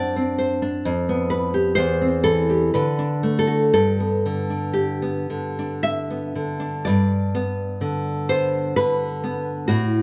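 A solo nylon-string guitar opens at once in an intimate, melancholic romantic piece, fingerpicked up front with a warm classical tone in a rubato 3/4, moving through chords from D7/F# to a settling G at 3.7 seconds before a new section begins at 6.9 seconds, all captured by close, detailed microphones in light reverb within this brief cut from a longer work.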